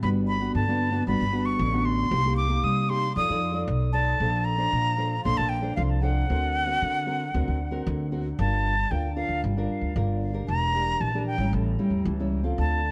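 Samba and choro at 115 BPM in G minor, bittersweet yet lively, with an airy jazz flute carrying the expressive vibrato melody through tape echo and taking a solo from 8.4 seconds, over full-bodied fingerpicked nylon-string guitar and a woody, thumpy pizzicato upright bass, all in light reverb with a worn, warbling cassette-tape pitch drift, cut from a longer piece.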